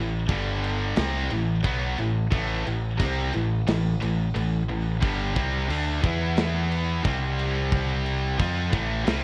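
A growling picked electric bass sits up front with a punchy, overdriven tone, anchoring this epic, aggressive heavy metal excerpt in A minor at 89 BPM in 4/4, played with a half-time feel. Two distorted electric guitars carry the riff from the first moment: one tight and bright, placed forward in the mix, the other high-gain with a scooped edge. A tight metal drum kit joins at 0.3 seconds, its acoustic studio-room sound featuring a medium-tuned snare, tight kick and bright crash cymbals. The harmony moves from G5 to Am, then through E5 and C5 before returning to Am near the close. Light reverb surrounds the band, and the whole recording carries the worn, warbling character of old cassette tape, with a warbly pitch drift. It is cut from a longer piece.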